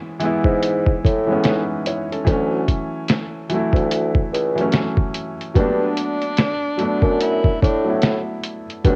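A muffled, sampler-style drum kit sits up front in this cosy lo-fi hip hop excerpt, its thumpy kick, fat snare and hi-hat pitched down, compressed and roughened by 12-bit grit and cassette tape. Alongside it, a felt-muted upright piano plays soft, intimate chords moving through Amaj9, Dmaj9 and Gmaj9, with thin felt and audible action noise under its own tape tint. A mellow bassoon carries the bass line in a vintage, classical style with light vibrato, entering at 0.4 seconds. At 5.6 seconds a breathy tenor saxophone slips in with a whispered, subtone melody, using scooped notes and soft attacks in a jazz manner. Swung sixteenths and small-room ambience give this home cassette recording a relaxed, lived-in feel.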